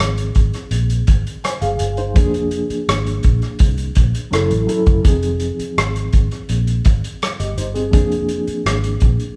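Heard in a moderately reverberant large studio with the band playing live together and a softened, dulled top end, this silky, smooth 1970s-style soul piece runs steadily in 4/4 throughout its 9.4 seconds. An up-front acoustic drum kit with a punchy kick and a rolled-off top keeps hi-hat, kick and rim click at the forefront, while a dark, round, foam-muted fingered electric bass sits low beneath it. A reedy, worn and slightly out-of-tune electric piano, played through its built-in speakers with a fast tremolo, provides the accompaniment, moving through Fm7, Bb7/F and Gbm7 chords.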